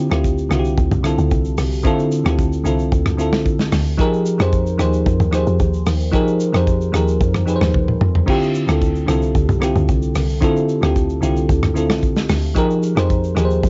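A lo-fi cassette sound with light reverb and a dull top end gives this amapiano fragment, cut from a longer piece, a deep, soulful, homemade feel. A bell-like FM electric piano sits up front with a sparkling, warbling vintage tone, its chorus-treated chords moving between Dm11 and Fm11, first changing at 4.0 seconds. Beneath it, a woody log drum bass supplies punchy, percussive low notes that decay with a dark edge. The acoustic soul drum kit is dry and also placed up front, with a tight kick, a medium-tuned snare, rim clicks, shaker, hi-hat, toms, a crash, and dark cymbals. A short drum fill arrives at 7.7 seconds before the groove carries on in a steady, straight 4/4.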